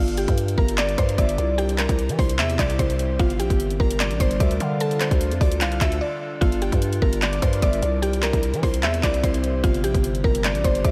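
A half-time trap groove in 4/4 drives this brooding, hard-hitting hip hop excerpt, built on an overdriven electronic kit with a hard-clipped kick, bright hi-hats and handclaps sitting up front. Beneath it, a growling, buzzy 808-style bass with saturated, fast-attacking, decaying notes also sits forward in the mix. A woody, round, mallet-like synth pluck carries the melody with a percussive, chorused attack, while a glassy FM pad holds ethereal sustained chords in the background through a Gm7, C and Dm progression. A soft, breathy flute-like lead with vibrato and delay enters at 0.8 seconds as a quiet second line, falls away for a stretch, and returns at 7.2 seconds after a short break at 6.0 seconds. A moderate cathedral reverb soaks the whole mix in a dreamy haze.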